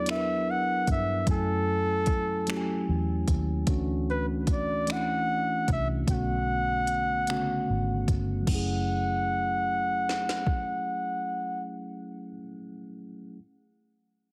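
A slow, straight 6/8 groove at 50 BPM carries this yearning, sultry R&B excerpt in F# minor. A close-miked flugelhorn with light vibrato sings the melody over mellow tine electric piano chords moving through E7, F#m9, Dmaj9 and Bm9. Beneath them sit a dark, round, foam-muted fingered bass and a smooth electronic kit of soft kick, woody snare, hi-hat, finger snaps and crash, which stops at 10.7 seconds. The whole mix sits in light reverb with a heavily compressed radio sound.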